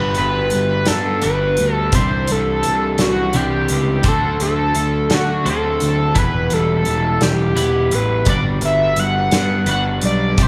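A screaming, sawtooth-edged synth lead sits up front in this jangly, upbeat indie rock passage, its gritty, guitar-like tone carrying the melody with distortion, chorus and vibrato over sustained notes. Beneath it, a crunchy overdriven guitar and a clean, compressed twelve-string electric guitar play picked riffs in the background, both bright and chiming in a straight 6/8 feel. A growly fuzz bass, mixing direct and amped sound with overdrive, anchors the low end. The loose acoustic drum kit comes in at 0.1 s and sits up front, with a punchy kick, a medium-tuned snare, hi-hat and a rolled-off top in a pumping room sound. The harmony moves from Gmaj7 through Cadd9, D7 and Em before returning to Gmaj7, and the band sounds as if it is playing live together in a large studio with a moderate reverb tail of 1.2 s.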